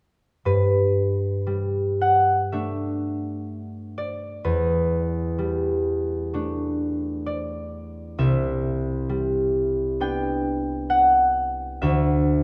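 In a rubato 4/4 pulse drifting between 54 and 67 BPM, this graceful, serene classical passage for solo concert harp, cut from a longer piece, unfolds in G major from 0.5 to 12.4 seconds, its ringing, fingerpicked acoustic tone sitting up front across a range from C2 to G5 as the harmony moves from Gadd9 through Em7 and Cmaj9 to Dadd9, set in a moderate recital-hall reverb.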